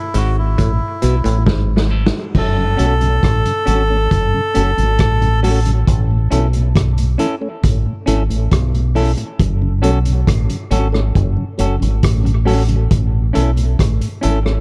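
A reedy, breathy melodica steeped in dub echo opens this heavy, meditative dub reggae excerpt, joined by a clean hollow-body electric guitar, a stringy, overdriven muted clav that drops out by 1.7 seconds, and a muffled, lo-fi vintage drum kit whose fill closes the opening break, while a round, punchy fingered bass sits up front and a mellow tonewheel organ with a slow rotary speaker and key click drifts in from the background at 2.6 seconds, the production dark and warm in a small room.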